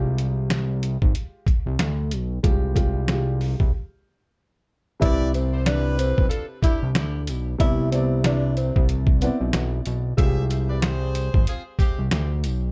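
A breathy, whispered tenor saxophone carries the jazz-style melody from 5.0 to 9.4 s in this soulful boom-bap hip-hop cut at 93 BPM in C major, its scooped, subtone notes treated with digital delay and joined by tight, clear pop-style horn stabs. Underneath, a compressed, pitched-down sampler drum kit with a thumpy kick sits up front beside a fat, detuned analog bass with a filter pluck, while a woody upright piano with audible action noise takes on cassette-tape character as the chords move between Fmadd9 and Cmaj9. A jingly tambourine stays in the background, a brief break arrives at 3.7 s, and the swung groove is dry and dark in its overall production.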